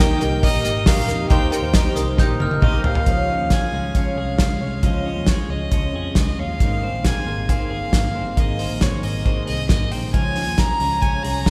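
This breezy, youthful jangly indie pop piece, cut from a longer song, opens with the band at a straight 136 BPM in 4/4 over an Eb chord. A reedy, gut-toned violin carries the melody in a period style, while a picked steel-string acoustic guitar adds warm accompaniment and a bright, twangy twelve-string electric guitar plays clean, compressed arpeggios. A round sawtooth keyboard with chorus and a filter sweep adds decaying accompaniment, and a dark, foam-muted electric bass sits low beneath an up-front, cloth-damped drum kit with a fat snare, a tight kick and a rolled-off top. At 2.0 seconds a sparkling, close-miked glockenspiel played with brass mallets rings out a short bell-like line high above, and a drum fill at 2.2 seconds leads into a new section at 3.1 seconds, where the keys drop away. The harmony then moves through Db, Abadd9 and back to Db, all set in the long, lush reverb of a church or concert hall.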